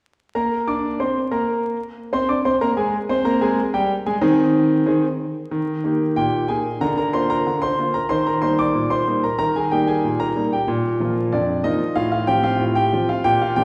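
Lively and playful, this short ragtime piano excerpt moves at 93 BPM in a straight 2/4 in Eb major, cut from a longer piece. A solo concert grand plays from 0.3 to 13.6 seconds, sitting up front with an intimate, boxy tone, deep bass, long sustain and audible action noise, ranging from F2 to D6 over chords that pass from Bb9 and Ab into a second section beginning at 5.5 seconds. The piano is set in a wet recital hall reverb with a 1.8 second decay, and a layer of vinyl crackle adds an aged surface to the sound.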